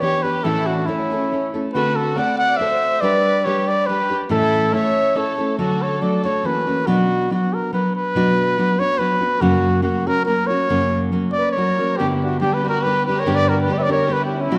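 Passionate and dramatic, this mariachi excerpt in 3/4 at 141 BPM sets a mellow, close-miked trumpet melody with light vibrato up front over a full-bodied, fingerpicked nylon-string guitar, while a soft, floating sul tasto violin section adds a bowed second line that drops out at 6.4 s and returns at 11.4 s, as the music turns from D major to B harmonic minor at 6.9 s inside a moderate concert hall reverb.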